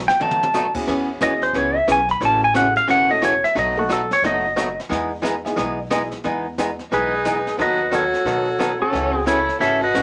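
Heard in a wet small room, this playful, down-home western swing at 179 BPM features a twangy, up-front lap steel guitar carrying the melody with volume swells over a clean hollow-body archtop guitar, a jangly tack piano in the background until 6.1 seconds, a woody pizzicato upright bass and an airy brushed drum kit with a boomy kick, while a dark bowed fiddle adds a second line from 6.9 seconds.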